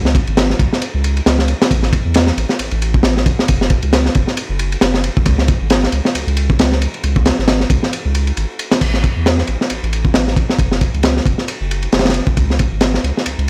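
Energetic and gritty, this breakbeat excerpt at 135 BPM in C# minor has a lightly swung feel, pairing a deep, thick saturated sub bass from the start with a crunchy, punchy breakbeat kit up front, its high-tuned snare, dark cymbals and rolled-off top sitting in a dry, hardware-recorded sound with transformer saturation and vinyl crackle, as the opening drop gives way to a short break at 7.9 seconds before a new section begins at 8.8 seconds.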